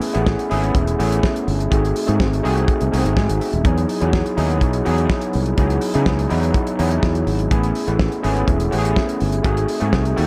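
Darkly produced with a light small-room reverb, this glamorous, danceable disco excerpt pairs a barky, gritty tine electric piano through a combo amp with analog chorus, a dry 70s drum kit with a fat snare and tight kick, and a growly, punchy fingered electric bass entering at 0.2 seconds, the piano slipping in a brief fill at 2.9 seconds over changes from Amaj7 and G#7b9 to Emaj7 and C#m11.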